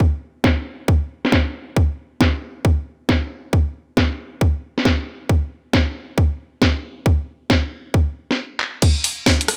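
A swung sixteenth-note shuffle in 4/4 drives this soulful, late-night UK garage cut from a longer piece, with a tight, up-front electronic kick starting at 0.0 seconds. A layered garage kit joins at 0.4 seconds, with a cracking snare, bright hi-hats, handclaps, rim clicks, claves and crash cymbal, its snare, hats, cymbals and percussion each run through a low-pass filter, and both drum parts carry studio reverb. The groove halts at 8.4 seconds for a brief stop broken by a drum fill.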